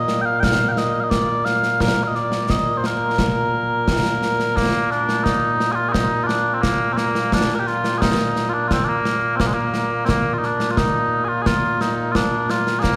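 In a straight 2/4 feel, this ceremonial, proud fragment of Scottish traditional pipe music sets a mellow, sweet, continuous melody on small bagpipes up front against an acoustic concert snare drum and concert bass drum with bright cymbals and a small-room character, as a wet concert-hall reverb surrounds the whole performance.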